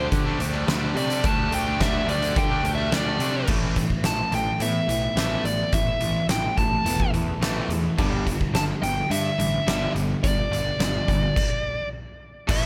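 Heard through a small room's ambience, this brooding, angsty quiet-loud alternative rock excerpt at 107 BPM in 4/4 opens with a dark, smooth overdriven lead guitar soloing over Dsus4, its melody up front and trailed by analog delay, while a boomy, fat-snared, low-tuned drum kit sounds saturated and gritty in a pumping room alongside a growly, fuzz-overdriven picked bass. Behind them, a biting guitar bathed in spring reverb and a compressed overdriven guitar play riffs, joined at 3.5 seconds by a very quiet, double-tracked fuzz guitar riff and by twangy, slightly broken-up arpeggios through a small old amp with lush chorus, which last until the shift from Asus2 to G5 at 8.0 seconds. The band breaks off in a stop at 11.4 seconds before the excerpt cuts off.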